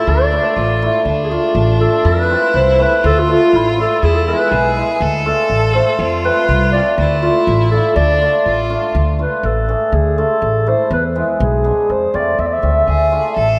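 Soulful and festive, this brief klezmer excerpt in D dorian sharp4 moves at 122 BPM in a straight 2/4, with a dark, soft-attacked clarinet carrying the melody up front through a diffuse ambient delay, a bright, focused bowed violin adding a second line with vibrato until 8.9 s and returning near the close, a woody pizzicato upright bass anchoring the low end, and a shimmering, ringing hammered cimbalom accompanying, all bathed in a lush, dreamy hall reverb as the clarinet takes a solo from 8.9 s.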